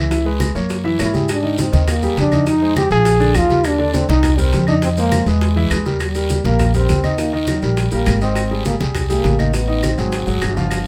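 Low-tuned, thick-skinned congas played with hard hands, round and saturated bongos, a raspy guiro and grainy, distant maracas drive a straight 4/4 groove at a brisk 204 BPM, joined at 0.4 s by woody claves in a large room, in this sunny, sophisticated Afro-Cuban jazz passage in Eb major cut from a longer piece. An up-front pizzicato upright bass with steel strings anchors the low end, while an intimate concert grand piano with deep bass and audible action noise accompanies through jazzy changes. A mellow, close-miked trombone with vibrato carries the melody from 1.0 s and takes a solo from 6.0 s, set in light reverb.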